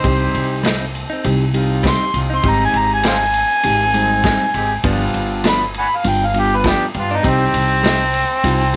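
An overdriven, gritty harmonica sits up front in this soulful, smoky soul blues excerpt, soloing between C4 and C6 with light vibrato, tongue slaps and scooped notes in a jazz style over a straight-eighth 100 BPM groove in C harmonic minor. Behind it, a reedy, bright electric piano plays the accompaniment through Cm, Abmaj7 and G7. A distant, roomy horn section holds sustained chords, and a clean, compressed direct-recorded guitar plays picked stabs until 8.0 s, while a woody, dark pizzicato upright bass and a crunchy, saturated breakbeat kit with a tight kick and rolled-off top anchor everything in light reverb and small-room ambience.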